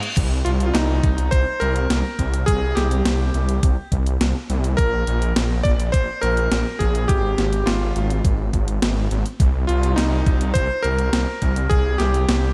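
A crash, hi-hat and gritty, overdriven 12-bit drum-machine snare open this driving, nostalgic synthwave excerpt in C minor at 104 BPM, joined at 0.2 s by a thumpy, overdriven electronic kick and a thick, detuned sawtooth bass with chorus up front, while from 0.4 s a bright, cutting vintage electric grand piano carries the melody through a diffuse ambient delay, all set in a dreamy mix soaked in lush hall reverb.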